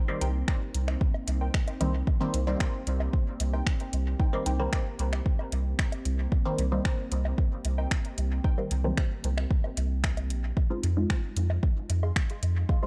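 A straight 4/4 pulse from an up-front, tape-warm electronic kick anchors this meditative dub techno excerpt, alongside a deep house kit of finger snaps and metallic hi-hats, dry woodblock and congas in the background, a round, soft sub bass, muted, detuned chord stabs steeped in phaser and dub echo, a higher filtered stab riff that comes and goes, and a warbling, lo-fi tape-like pad sitting darkly underneath, while sidechain pumping runs through the pad, stabs, bass and percussion as the harmony moves from Cm7 to Fm7 at 10.6 seconds.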